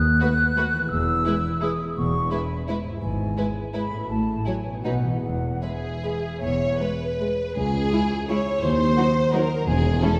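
Classical orchestral music in 3/4 and E major, sweeping and elegant, with a rubato feel moving between 142 and 186 BPM, heard from further back in a wet scoring-stage hall. A warm, expressive violin melody with portamento sits in the background beneath a rich, smooth violin second line and a pure-toned flute, while a warm viola section, ringing thumb-plucked harp arpeggios, a close cello section and a dark double bass section fill out the texture. A background tuba joins as the harmony turns to C# minor at 7.6 seconds, and a very quiet, dry timpani stroke on E sounds at 9.7 seconds as this cut from a longer piece closes.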